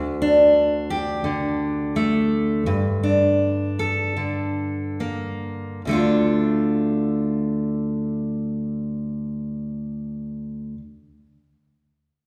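Reflective and wistful, this short folk fragment in D minor, cut from a longer piece, features a bright, full-bodied fingerpicked jumbo steel-string acoustic guitar up front in a wet recital hall reverb, moving from D5 through Gm to Dm at 67-89 BPM, slowing during the first 5.9 seconds.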